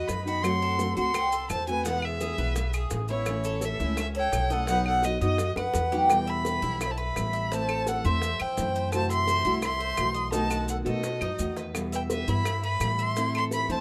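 Warm and danceable, this excerpt of Cuban son and guajira in E minor moves at 170 BPM, with an expressive bowed violin up front carrying the melody with vibrato and portamento, a breathy, hollow flute adding a distant second line, bright metallic tres arpeggios, full-bodied fingerpicked nylon-string guitar, a dark, thumpy pizzicato upright bass, high-tuned bongos, woody claves and grainy maracas, set in light reverb, with drum fills at 5.6 and 10.3 seconds.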